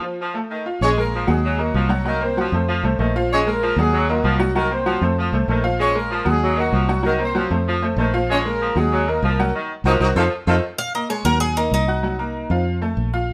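This Latin excerpt, cut from a longer piece, is danceable and driving, in a straight 4/4 feel. A bright, worn upright piano with audible action noise and a woody, slightly detuned tone sits up front as accompaniment alongside a bright, vintage saxophone section carrying a second line, while a fingered electric bass enters at 0.8 seconds with a round, foam-muted sound. A dark, punchy horn section with light vibrato and octave doubling carries the melody from a distant, roomy position over a repeating progression. The band hits an accent near 9.5 seconds, and at 10.8 seconds a Cuban tres takes a solo with a metallic, picked double-string tone, up front over the piano and bass. Moderate studio reverb gives the ensemble a sense of space.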